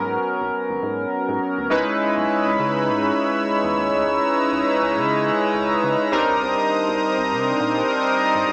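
A glossy, bright chorused polysynth carries the accompaniment in this danceable funk piece, cut from a longer track, at 102 BPM with a swung sixteenth feel in C# dorian, riding over a rubbery, hollow square-wave bass that sits dark and low in the mix, while a smooth, detuned analog pad with chorus enters at 1.7 s as the harmony moves from G#m11 to C#m9 and slips to Cm9 at 6.1 s, framed by light reverb and a small-speaker tone.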